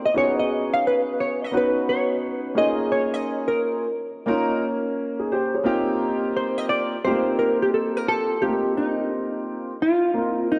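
Smooth and cool, this hip hop piece moves at 87 BPM in 4/4, with a 65% swing on the sixteenth notes giving it a relaxed lilt. A dark grand piano carries the accompaniment from the start, its mellow tone and long sustain sitting up front with a touch of analog chorus. A clean, fingered hollow-body jazz guitar plays the melody from 0.1 seconds, its electric sound dark, also up front and coloured by analog chorus. The guitar takes a solo through 8.4 seconds, over harmony that moves from Db9sus4 to Eb9sus4 and then F9sus4, before a new section begins. A wet plate reverb with a long tail soaks the mix in a dreamy haze, and the recording is cut from a longer piece.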